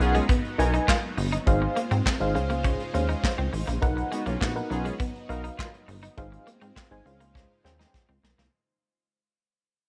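Feel-good and danceable, this early-eighties boogie funk clip rides on a punchy, plucky analog bass and an up-front vintage brush kit with handclaps, hi-hat, punchy kick and a medium-tuned snare in a pumping small room, all under a fade-out, with a drum fill closing from 7.4 s. A twangy, slightly broken-up electric guitar riff with analog chorus sits beside a dark, full-bodied FM electric piano with tremolo that carries the accompaniment, and the piano drops out at 8.0 s. A bold, fat analog synth brass line with chorus and vibrato plays until 5.4 s, while a lush, detuned unison pad holds bright sustained chords in the background over Bmaj7, Ab6 and Dbmaj7.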